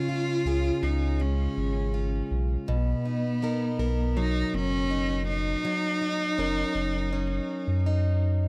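A light reverb gives this short, intimate folktronica fragment a close, delicate sound, cut from a longer piece and tuned slightly low to A4 = 435 Hz. At a straight 81 BPM in 4/4, a picked, plugged-in steel-string acoustic guitar plays boxy arpeggios touched with delay, finger squeak audible up front. A single bowed cello carries the melody from the start, played sul tasto with an airy bow, soft attack and gentle vibrato, its delayed tone sitting close and warm. From 0.5 seconds a deep, round sine sub bass anchors the low end with fast-attack, sustained notes. The harmony moves from Db to Bmaj7 at 2.7 seconds and settles on Gb6 at 5.6 seconds before the fragment ends.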